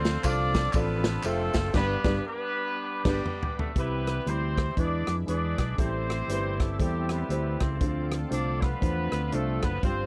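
Jubilant and uplifting, this uptempo gospel excerpt swings at 119 BPM as a tight, vintage horn section carries the melody with octave doubling over woody upright piano, a round, dark fingered electric bass and a punchy, natural country drum kit, while a very quiet tonewheel organ holds bright, lightly overdriven chords through a slow rotary speaker. Tambourine and handclaps sit in the background only until 1.6 seconds, the band hits an accent from 1.7 seconds with a drum fill joining at 2.7 seconds, and at 3.8 seconds a faint, mellow French horn section adds smooth sustained chords. The sound is dry and close, in a 1970s studio style.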